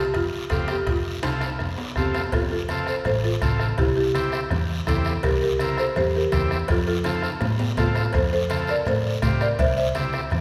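Cumbia with a danceable, joyful lilt, this excerpt moves in a straight four-beat feel from a longer piece. A buzzing marimba carries the melody with woody, smooth hardwood tones struck by medium mallets, while a vintage combo organ adds clean, buzzy accompaniment shaded by light vibrato. Underneath, a hollow-body short-scale electric bass, picked and amped, supplies a dark, round low end. The percussion enters at 0.1 seconds, with a soft-beatered bombo in a live room, a raspy guiro up close, and ringing metal-shell timbales and cowbell set in the background, while low-tuned, thick-skinned congas played with soft hands join at 0.2 seconds, very quiet. Drum fills mark the passages from 1.2 to 2.3 seconds and 7.1 to 8.1 seconds as the harmony shifts between F and C7, all bathed in a wet, churchlike reverb.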